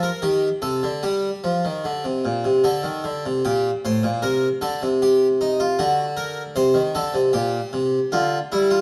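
Classical baroque-style two-part invention in 3/4, a brief excerpt of a serious, solemn piece for solo harpsichord, whose full, plucked French-style voice on two sets of strings sits up front under close, detailed microphones and a moderate recital-hall reverb, moving from an opening section into a second one at 3.4 seconds.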